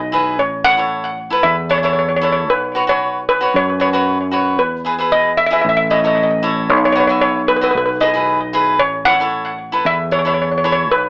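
Sunny and festive, this calypso excerpt moves at 114 BPM in a straight 4/4, with a bright, shimmering steel pan (double seconds, struck with hard rubber sticks) carrying the melody up front through a digital delay. A crisp, picked cavaquinho also sits up front with acoustic chords over A, Bsus2 and E, while an overdriven fingered electric bass adds a round, punchy low end. The whole mix has a moderate studio reverb and a lo-fi AM radio character.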